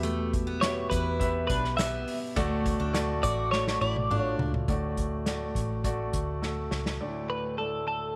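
Piano-driven pop in D major at 104 BPM, this short excerpt from a longer piece has a warm, anthemic mood and a straight 4/4 feel. A concert grand piano carries the accompaniment up front with deep bass and long sustain, joined by a full-bodied dreadnought acoustic guitar playing a picked riff until 4.5 seconds. A vintage, foam-muted fingered electric bass gives a dark, round, amped low end, while an airy, polished unplugged drum kit played with bundle sticks brings a punchy kick, medium-tuned snare, hi-hat and toms, adding fills before both drop out at 7.0 seconds. From 0.6 seconds a bright, twangy twelve-string electric guitar takes the clean, compressed melody up front, colored by slapback echo. The chords move from Em to D and settle on Dsus2, all set in light reverb with small room ambience.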